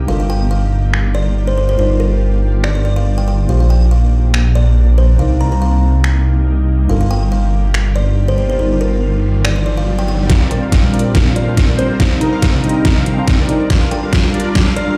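A thick, detuned saw bass sits up front and pumps against the sidechain through the opening stretch of this dreamy, bittersweet future bass excerpt in G minor, moving at 141 BPM with a half-time, lightly swung feel. Around it, a worn, slightly out-of-tune tine electric piano carries the phased accompaniment, while a shimmering, ethereal pad holds sustained chords beneath, and a buzzing, woody kalimba plays the melody through a low-pass filter and dub echo. A layered dubstep kit of finger snaps, metallic hats and a deep snare, all filtered and re-recorded in a small room, arrives at 0.9 seconds. The chords cycle from Gm7 through Ebmaj9/G, Bb69 and Cm7, and a background riser builds from 8.4 seconds. At 10.3 seconds the bass drops out as a fat, bold polysynth riff and a knocking electronic kick take over, with filter sweeps on the synth and kalimba and a drum fill driving the build-up. The whole piece is bathed in a large studio reverb, as if played on a big sound system in a bare room.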